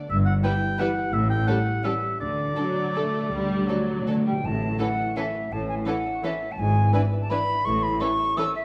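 A brief, rubato orchestral ballroom waltz in 3/4, moving between 153 and 184 BPM with a festive, sweeping character, cut from a longer piece that begins in D major and shifts to A major at 4.4 s. A concert harp rings out arpeggios across the full span, while a lush violin section carries a smooth, close melody over a second, soft-attack violin line set in the background. A rich, focused viola section fills in the accompaniment, and bowed cello and double bass sections anchor the bass, the basses smooth-topped and the cellos distant. A distant, roomy oboe sings a second line until 4.0 s, and a pure, crisp silver flute then takes up its own up-front counterline from 4.3 s. Timpani played with medium mallets sit in the background, adding a fill from 2.2 s, and a wet recital hall reverb gives the ensemble a sense of space.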